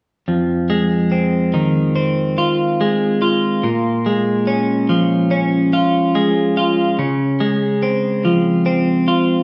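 Rock in F minor at 72 BPM in a straight 4/4, this short excerpt from a longer piece feels cathartic and cinematic. A lone twelve-string electric guitar carries it from 0.3 to 9.4 seconds, picking clean arpeggios that span F2 to F4. Its tone is bright and twangy, compressed and sitting up front in the mix. The harmony moves from Fm7 to Bbm7 at 3.6 seconds and on to Dbmaj7 at 7.0 seconds. A wet stone room reverb with a 1.3-second decay surrounds the guitar, and the sound is that of a band playing live together in one room. The instrument is tuned to A4 = 436 Hz, a touch below standard pitch.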